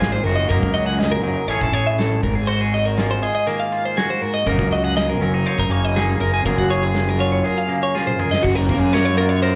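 A playful, wistful slice of math rock and midwest emo opens with all four parts together at 121 BPM in a straight 4/4, centred on Gb lydian. A twangy, clean electric guitar carries the accompaniment, its slapback echo giving it a springy edge, while a bright, compressed twelve-string electric guitar spins arpeggios up front with a warbly pitch drift and its own slapback echo. Beneath them, a fingered electric bass pushes a round, fuzzy overdrive, and a loose indie drum kit with a punchy kick, medium-tuned snare, hi-hat, toms and crash sits back in a small, pumping room. The harmony drifts through lush chords such as Ab13, Gb6 and Amaj7, before a drum fill at 7.9 seconds leads into a new section at 8.4 seconds that settles on Gbmaj7. Captured as a live gig through the venue's PA, the sound carries a touch of club reverb and a raw, immediate feel.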